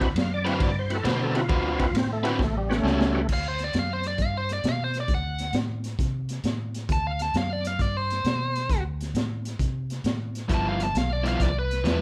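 A swung shuffle in 4/4 drives this gritty, rollicking electric blues, built on a crunchy breakbeat kit with dark cymbals, a high-tuned snare and a punchy kick, under a round, foam-muted fingered bass. A thick, overdriven tonewheel organ, turning through a slow rotary speaker with chorus vibrato, opens the piece alongside a hollow-body semi-hollow guitar riff, until a drum fill leads into a biting, bright lead guitar melody at 3.3 seconds. The semi-hollow riff returns at 10.5 seconds beneath the lead, with the band captured live in one room under light reverb.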